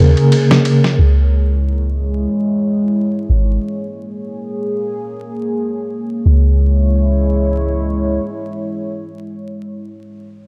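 Smoky and hypnotic, this trip hop excerpt moves at a relaxed pace with a light swing in 4/4. A bell-like tine electric piano, bright and up front, opens the fragment with tremolo, low-pass filtering and tape echo before dropping out after 1.0 seconds, while a faint, ringing concert harp adds a brief thumb-plucked arpeggio. A deep, moody ambient pad carries sustained chords through to 9.6 seconds, its slow attack and long release thickened by chorus, reverb and a grainy 12-bit sampler texture. Underneath, a soft, round 808-style bass sits up front, with a filter sweep across its first 3.6 seconds, as a dusty, compressed soul drum kit taps out ride cymbal and a medium-tuned snare with tape-warm character. The harmony sways between A#m7 and C#m, and the dry, gritty hardware sound carries transformer saturation and vinyl crackle.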